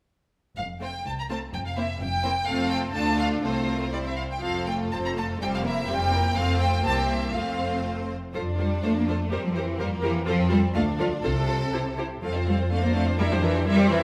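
Lively and graceful, this quick classical-period movement for string orchestra moves in 2/4 at 124 BPM in F major, with a rubato feel and a tuning of A4 = 445 Hz, cut from a longer piece. A clear, distant first violin section carries the melody with an intense, vibrato-laden tone, while bright, focused second violins and close, bright violas fill in the inner lines, and a clear cello section joins a rich, smooth double bass section on the bass. The bowed ensemble sounds lush in a moderate scoring-stage reverb, opening with all sections by 0.8 s and shifting into a new section at 8.3 s over harmony built mainly on tonic and dominant chords, with touches of D minor.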